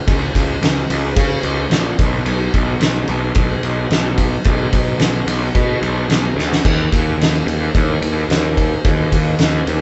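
A straight 4/4 pulse at 110 BPM drives this brooding, angsty slice of quiet-loud alternative rock, cut from a longer piece. A loose indie drum kit, with its fat snare, tight kick and dark crash and ride cymbals, sits up front but sounds roomy, and it breaks into a fill at 6.4 seconds. A picked electric bass, growly with fuzz and overdrive, runs alongside it, with the two sounding like a band playing live in one room under light reverb and a dulled top end.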